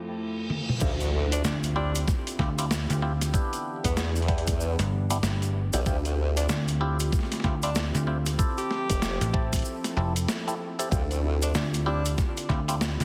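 This glitch hop excerpt struts along at 95 BPM in a swung 4/4, swaggering and playful in D dorian. A very quiet electronic reverse cymbal sweeps over the opening Fmaj7 break, with a drum fill from the gritty, pitched-down boom bap sampler kit and its high-tuned snare at 0.5 seconds before the drop lands at 0.8 seconds with a faint impact. From there an overdriven, knocking electronic kick sits up front beside a saturated, wobbling formant-sweep bass, joined at 1.4 seconds by a snappy FM bass with a metallic attack. A stringy, percussive clav punctuates the chords with stabs through phaser, filter and delay, while a grainy tube shaker plays in the background. A breathy tenor saxophone carries the melody with subtone, light vibrato and scooped notes, and a nostalgic, detuned tape-like pad with 12-bit grit and chorus hangs behind everything, pumping under the sidechain. The chords move through Dm11, Em7 and Fmaj7, and the whole mix has the heavily compressed, radio-like sound of digital ambience with a light reverb.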